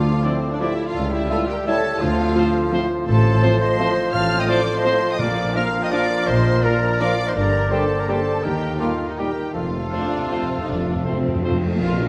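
A dark, distant violin section carries the melody with vibrato and portamento in this sweeping, elegant orchestral ballroom waltz in 3/4 at a rubato 152-184 BPM. A pure flute, a mellow cor anglais, a clarinet and a second, smooth-topped violin section add second lines, while a close-miked bassoon and very quiet, focused violas accompany and a bright, ringing harp arpeggiates. Lush cellos and even double basses hold the bass beneath very quiet French horns and a tight trombone section sustaining chords, and a clear, roomy trumpet adds stabs. Hard-mallet timpani strike at 5.2 seconds, then fill from 9.5 seconds alongside a bright cymbal swell and tam-tam, leading to a full-orchestra accent at 11.8 seconds, all within a wet concert-hall reverb.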